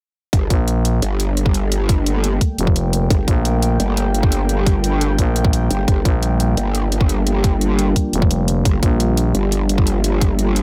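Dark technical drum and bass with a mechanical, dark mood, where a tight, overdriven kick and bright, overdriven hi-hats drive from 0.3 s under an aggressive, wobbling growl bass with chorus and a thick, growling FM bass, both up front, while two deep, moody ambient pads with chorus, reverb and sidechain pumping drift in around 2.0 s and 2.3 s in the background, one warbling and vintage, the other mellow, over a sustained G minor chord in this excerpt.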